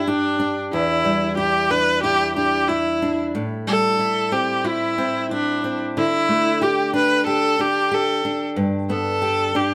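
Sunny and carefree, this short pop excerpt at 92 BPM in G major swings gently as a clear, bowed viola sings the melody with smooth vibrato, close and up front, over a warm fingerpicked steel-string acoustic guitar moving through G, Em7, Am7 and Dsus4 before settling back on G, both heard together throughout in a moderately reverberant studio room as if played live.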